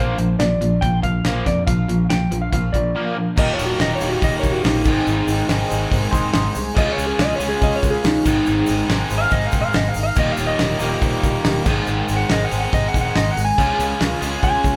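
A dark, clean lap steel guitar carries the melody and takes a slide solo from 3.4 seconds, riding over a double-tracked, overdriven semi-hollow guitar riff with spring reverb, a growling overdriven fingered bass and a dry 70s drum kit with a fat snare and tight kick, all set in a moderate large-room sound of a band playing live together. This swaggering, sunny classic rock cut in straight 4/4 pauses for a brief break just before the solo, after which a reedy electric piano with phaser and an egg shaker join in the background, while a very quiet picked steel-string acoustic guitar, finger squeaks and all, fills out the accompaniment beneath a chord cycle moving through Eb, Ab and Db.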